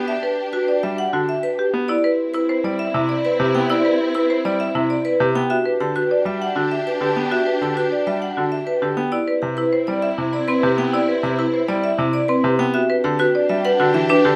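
Up front and woody, a hard-mallet marimba on rosewood bars spins percussive arpeggios with a slightly vintage, band-limited colour through this bright, hypnotic stretch of minimalist classical pattern music in six. Above it, a vibraphone with medium hard mallets carries the melody, its metallic, ringing tone shaded by a medium motor vibrato. A brilliant grand piano supplies the accompaniment, intimate and present, with its action noise clearly audible. Alongside these, a warm symphonic string section holds lush, bowed chords with vibrato, a smooth top and a focused ensemble sound. The harmony alternates between Em7 and Cmaj7, and close, detailed microphones with little reverb make this fragment of a longer piece feel immediate, with all four parts sounding together across its 14.4 seconds.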